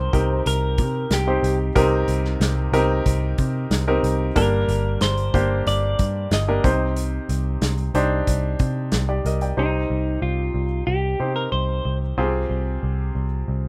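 This rough home demo mix carries a light reverb, and the piano, bass and drums sit close and unvarnished in a short clip cut from a longer piece. It is earnest, driving piano-driven pop in C minor at 92 BPM in a straight 4/4, with the harmony moving from Cm7 through Gm and Cmadd9 before settling on Cm and Fmadd9/C. A clear concert grand piano leads the accompaniment up front, intimate and polished, with audible action noise, deep bass and a short sustain. Beneath it, a vintage muted picked electric bass adds a dark, foam-muted, round and punchy low end. A loose indie drum kit of hi-hat, kick and snare sounds like a small room, with a medium-tuned snare and tight kick. Over the top, a clean electric guitar carries the melody with a compressed, picked tone and a touch of delay. The drums drop out at 9.6 seconds as the music moves into a new section, the guitar ends at 12.0 seconds, and piano and bass carry on together until 13.7 seconds.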